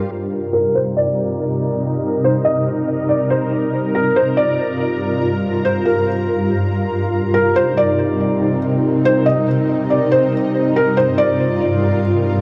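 A dark, shimmering pad of detuned, granular sustained chords sits up front through this melancholic, ethereal half-time hip hop excerpt at 141 BPM in C minor, moving between Cm7 and Gm7 with a filter sweep running from 0.1 to 6.9 seconds. A felt-muted upright piano enters at 0.5 seconds with a soft, mellow melody, its intimate tone carrying audible action noise and tape echo. A lush hall reverb and the character of a home cassette recording wrap the whole piece.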